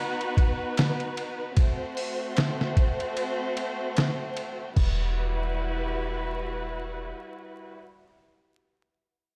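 Dark, vinyl-crackled production with light reverb frames this smoky, brooding trip hop excerpt at 75 BPM in E harmonic minor, where a lush, distant bowed violin section holds sustained chords with vibrato and portamento from the start, a gritty, pitched-down sampler-style drum kit with a thumpy kick plays until 4.9 s, and a deep, round 808-style bass with tube saturation enters at 4.8 s on an Emadd9 chord.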